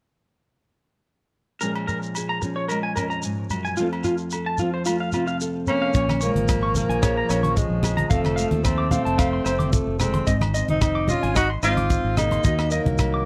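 This highlife guitar band excerpt in Bb minor moves at 111 BPM with a lightly swung sixteenth-note feel and a bittersweet, warm mood. It opens at 1.6 seconds with a full-bodied, fingerpicked nylon-string guitar in classical style, a twangy, slightly broken-up electric guitar playing picked arpeggios through spring reverb and tape echo, and a grainy shekere, soon joined by ringing agogo bells in the background. At 5.7 seconds a breathy tenor saxophone takes the melody up front, whispered and intimate with subtone, vibrato and scooped notes, while an alto saxophone with a smooth top carries a second line further back. A round, fingered electric bass and a tight funk drum kit of hi-hat, kick and rim click arrive at 5.9 seconds, with low-tuned congas played with soft hands sitting behind them. The harmony moves from Bbm7 and F toward Ab and Ebm, all captured in a dry, close 1970s-style studio sound.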